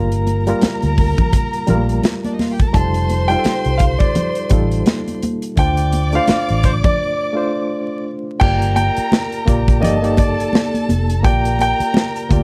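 Bittersweet and silky, this lush 1970s-style soul excerpt pairs a barky, lightly overdriven electric piano with fast tremolo, a dark foam-muted fingered bass, an up-front drum kit with a tight kick, high-tuned congas in the background and a close bowed violin section with vibrato, before an intimate grand piano takes the melody from 2.7 seconds, all under vinyl crackle and little reverb, with a break at 7.0 seconds.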